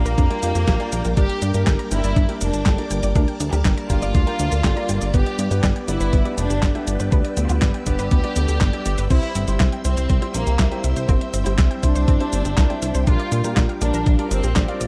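A melodramatic, bittersweet italo disco cut at 121 BPM opens at once with a smooth, vibrato-rich violin section carrying the tape-echoed melody over lush phased string-machine chords with vintage sampler grit, a round, detuned analog pluck arpeggiating in the background, dark concert grand stabs and a glossy, nasal chorused synth bass up front, while a clean 12-bit drum machine with fat snare, handclaps, hi-hat, cabasa and crash joins at 0.1 seconds and a thumpy electronic kick at 0.2 seconds, all moving through Bb6, Gm, G and C in a dark, warm production with digital ambience.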